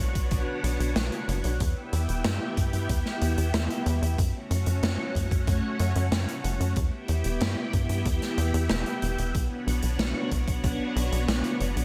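A lush string machine opens this moody, nostalgic synthwave excerpt at 0.0 seconds, its slow-attack sawtooth chords carrying a sub octave, a vintage ensemble chorus and a sidechain pump. A tight sequencer bass arrives with it, a punchy, driving filter pluck that blends sawtooth and square wave with a fast attack and a decaying, evolving tone, also pumping against the sidechain. From 0.2 seconds a layered, knocking electronic kick joins a big rock drum kit, whose hi-hat and medium-tuned snare ring out in a big room with gated reverb. The kick stops at 10.8 seconds while the other parts carry on to the cut. At a steady 93 BPM in straight 4/4, the harmony moves through Bmadd9, Em and F#m in B minor, tuned to A4 = 437 Hz. A light studio reverb rounds out the mix, with the strings and bass sitting up front.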